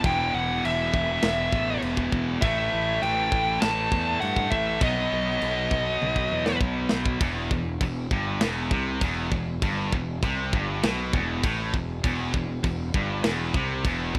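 Dark and aggressive, this heavy metal excerpt, cut from a longer piece, drives along at 100 BPM in a straight 4/4, centred on E harmonic minor. Two high-gain rhythm guitars carry the riff throughout, one bright and set back in the mix, the other with a scooped, distorted edge, while a growly, fuzz-laden picked bass sits beneath them. A tight acoustic metal kit anchors everything with a firm, tight kick, a medium-tuned snare, toms, crash and china cymbals, its sound mid-forward with a rolled-off top. Up front, a dark, distorted lead guitar plays a high melody from the start until 6.6 seconds, over chords moving from E5 through A5 and B. A drum fill from 6.0 to 7.2 seconds leads into a second section on E minor. The whole mix has the rough feel of a home demo in a small room.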